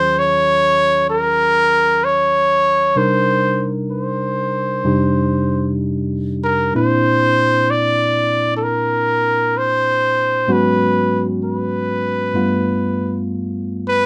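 A live-in-one-room sound with moderate studio ambience frames this smoky, intimate jazz ballad excerpt at 64 BPM in a swung 4/4, where a clear, punchy, forceful trumpet carries the melody up front over a bright, barky, lightly overdriven tine electric piano playing accompaniment through chords moving from Ebm11 to G9 across 14.1 seconds.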